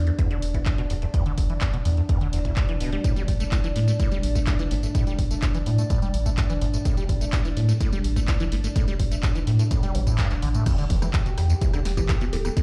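A straight 4/4 pulse at 126 BPM drives this hypnotic, trippy acid house excerpt in E minor, where a dry, up-front electronic kick and a punchy analog drum machine of snare, handclaps, hi-hat, rim click, tambourine, toms and crash sit beneath a deep, round sine sub bass with sidechain pumping and a squelchy, resonant acid bass riff run through phaser, overdrive, analog chorus and tape echo, while a warbling, lo-fi tape-like pad holds sustained chords with chorus and pumping of its own, a band accent at 10.2 seconds leads into a drop at 10.7 seconds, and a woody kalimba melody rings out briefly from 12.0 seconds, the mix carried by a stone room sound as if played on a big system in a bare space.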